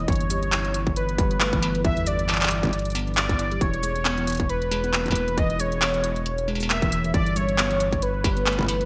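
A velvety, detuned synth lead carries an up-front melody with chorus and digital delay over ringing, harp-like synth plucks arpeggiating through chorus, phaser and delay and a round, deep analog bass, as a distorted electronic kick and a crisp industrial kit of cabasa, handclaps, hi-hat and struck metal bathed in gated reverb join at 0.1 seconds, giving this wistful, glitchy IDM excerpt at 136 BPM with a light 16th-note swing a bright 1980s-style digital sheen as it moves from G to E6 and back to G.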